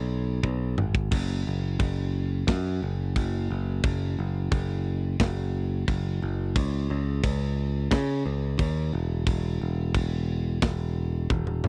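Heavy metal at 88 BPM in C# minor with an epic, aggressive mood and a half-time feel, cut from a longer piece: a bright, growly picked electric bass ranging from E1 to C#3 sits up front from the start, joined at 0.4 seconds by a tight acoustic drum kit with bright cymbals, medium-tuned snare, tight kick and toms, which plays fills at the opening and again at 11.3 seconds, all captured in a dry, close 1970s-style studio sound.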